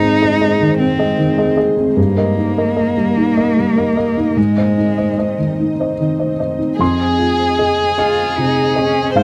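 Hopeful and intimate, this slow neoclassical fragment for piano and strings drifts at 50 BPM in a rubato 6/8 in Ab major: a dark, mellow baby grand with audible action noise carries the accompaniment beside a rich, expressive cello second line sung with vibrato and portamento, an ethereal, detuned pad with chorus and tremolo glows in the background from 0.3 seconds, and at 6.8 seconds a smooth violin melody with light vibrato arrives alongside very quiet, woody marimba arpeggios from soft mallets, the whole heard in a dry, close 1970s-style studio sound with light reverb.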